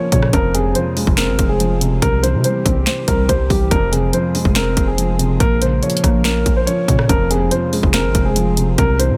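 Hip hop in a trap style, this short excerpt moves at 142 BPM with a half-time feel in F harmonic minor, hard-hitting and menacing from the first beat. A dark concert grand piano carries the melody in a mellow, filtered register with digital delay trailing its notes, while a felt-muted upright piano plays the accompaniment with a soft, intimate tone, short sustain and audible action noise. Behind them a glassy FM pad holds ethereal sustained chords, its slow attack and long release softened by ensemble chorus and built-in reverb. From 0.1 seconds a long, sine-based 808-style bass enters with a fast attack and decaying tail, joined by an electronic trap kit of hard-clipped kick, sharp snare, bright hi-hats, rim clicks and finger snaps, tape-toned and sitting up front. The harmony cycles through Fm, C and Bbm in a dry, close mix.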